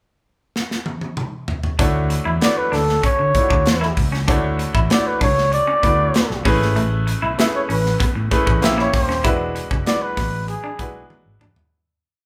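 A straight 4/4 groove drives this breezy, upbeat 1980s jazz-funk pop piece: a punchy, crisp studio drum kit opens with a fill in the pickup bar, and at 1.8 seconds an agile fretless bass with ghost notes and chromatic approach notes, a brilliant grand piano pushing rootless chords with grace notes, and a twangy, muted single-note guitar line join in, before a breathy, whispered flugelhorn enters up front at 2.4 seconds with a motif-based melody over a Dmaj9, Amaj9, A#dim7 and E9 progression in a large, reverberant room, the pre-chorus fading out from 9.2 seconds.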